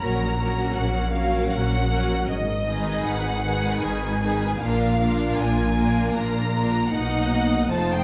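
A distant, lush violin section carries the melody above a second violin line with a smooth top, both bowed with vibrato, in this melancholic, solemn slow romantic movement for string orchestra in 3/4 with rubato. Focused violas fill in the accompaniment, rich cellos sit in the background, and an up-front double bass section with light vibrato anchors the low end, with all five sections playing together from 0.0 to 8.0 seconds. A wet recital hall reverb surrounds the ensemble in this short excerpt cut from a longer piece.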